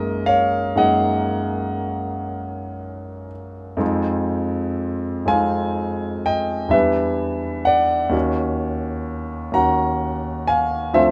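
A clear, intimate grand piano plays alone, up front with audible action noise and a natural tone in light reverb, spanning D2 to Bb5 across this 11.1-second passage cut from a longer piece. The music is impressionist classical in Eb minor, nocturnal and wistful, moving slowly in 9/8 at 38-43 BPM by the dotted quarter with a free rubato feel, tuned to A4 = 445 Hz. Its harmony moves from Gb69 through Fm7 at 3.8 seconds and Em7 to settle on Ebm7 at 8.1 seconds.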